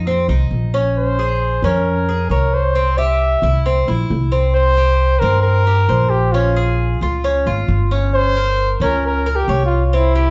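This Cuban son and guajira piece moves at 134 BPM in a straight 4/4, with a nostalgic yet danceable mood across its brief 10.3-second span, cut from a longer piece. A picked Cuban tres opens at once with arpeggios, its doubled strings giving a metallic, partly octave-doubled shimmer. Beside it, a pizzicato upright bass with steel strings supplies a woody, thumpy low end. At 1.0 s a trumpet with a bucket mute takes the solo melody in a jazz style, its tone mellow and veiled. All three parts sit up front, over a harmony that moves from F5 through Bbm7 and C7 before returning to Bbm7 and closing on Gdim. The sound carries a moderate large-studio reverb and is heard from further back in the room, with the top end softened.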